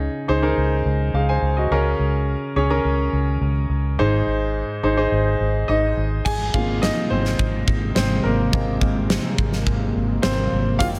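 In a straight 4/4 at 106 BPM, this hopeful piano-driven pop excerpt opens on a clear, long-sustaining grand piano over a dark, round muted electric bass moving through Dbsus2, Bbm7/Db and Ab, until at 6.3 s the piano takes a solo as a huge arena drum kit with punchy kick and bright cymbals arrives up front and a detuned sawtooth pad with chorus and a slow attack sits in the background, the whole mix wrapped in light reverb.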